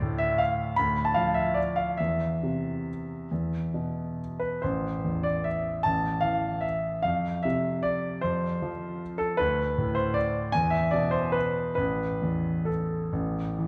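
A classical piano waltz in A minor, this short excerpt from a longer piece has a bittersweet, elegant mood. It moves in 3/4 with a rubato feel, the tempo drifting between 129 and 163 BPM. A solo grand piano carries it from start to finish across 13.7 seconds, ranging from A1 up to B5, with a clear, natural tone that sits up front. The harmony passes from D minor through C over E and on toward A minor at 4.6 seconds, then moves through F, D and E before settling on A at 11.8 seconds. A concert hall reverb with a 1.9-second decay wraps the sound in a generous, wet space.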